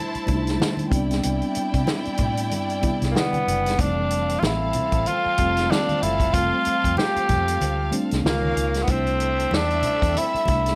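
A raspy, gritty tenor saxophone carries the melody up front from 3.1 seconds, riding over a lush, romantic 1970s-style soul groove at 94 BPM with a gentle sixteenth-note swing. Underneath, a mellow tine electric piano fills out the harmony and a bowed, vibrato-rich violin section adds a second line, while a vintage drum kit with a punchy kick, a dark, foam-muted fingered electric bass and soft-handed, low-tuned congas in the background keep the pulse. The chords move from C6 through Am11/C and Fmaj7 to a brief Db6 before settling back on C6, all under light reverb in this short cut from a longer piece.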